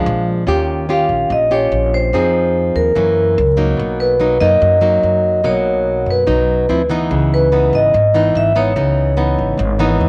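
A bossa nova fragment cut from a longer piece opens with all three instruments together: vibraphone, nylon-string guitar and upright bass, moving at 145 BPM in a straight 4/4 with an intimate, melancholic mood. The vibraphone carries the melody in a narrow range from Bb4 to F5, its medium hard mallets drawing a metallic, ringing yet dark and smooth tone with the motor off, and it sits highest in the mix. Beneath it, the fingerpicked nylon-string guitar plays classical-style accompaniment, up front and warm, spanning from Gb2 to Ab4. The upright bass is plucked on steel strings with a woody sound, holding low between G#1 and Gb2. The harmony drifts through rich seventh and ninth chords such as Bb7, Eb9 and Fm7, then shifts at 3.8 seconds into a second section that opens on Bmaj7 and later slides from Dm9 to C#m9. A wet spring reverb and small room ambience wrap the playing in a close space until the cut at 10.1 seconds.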